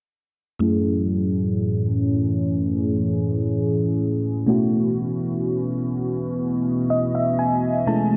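A lush, dreamy FM electric piano with a soft pad layer, shimmering through chorus and phaser, plays the accompaniment in this late-night, sensual R&B fragment over a dark, smooth analog pad that holds sustained chords, both moving from F#m7 to B9sus4 at 4.5 s under a filter sweep before the electric piano adds a fill at 6.4 s, all set in a moderate plate reverb.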